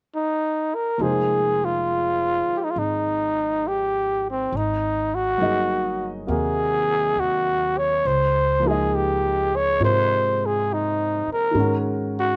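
A slow swung 4/4 at 68 BPM carries this melancholic, wistful jazz ballad in F minor, cut from a longer piece, with the chords moving from Fm7 through Ab9 and Dbmaj9 to Ab9sus4. A dark, raspy, growling trumpet sits up front with a breathy vibrato, playing the melody alone from 0.2 s. At 1.0 s an intimate concert grand piano, with audible action noise and deep bass, and a woody pizzicato upright bass join underneath, all heard dry in an open-air setting.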